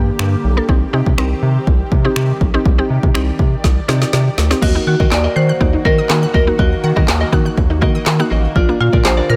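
Dance-pop with an upbeat, summery mood, cut from a longer piece, where a woody, mallet-like synth pluck, a lush detuned pad in the background and a round analog bass all pump under sidechain beside an up-front deep house kit of punchy kick, snare, handclaps, finger snaps and crash, until a drum fill at 3.6 seconds leads at 4.6 seconds to a bright marimba melody with hard mallets and digital delay, a very quiet evolving unison pluck playing arpeggios, and a clean, direct-recorded electric guitar riff with subtle chorus, all in a dry, close mix.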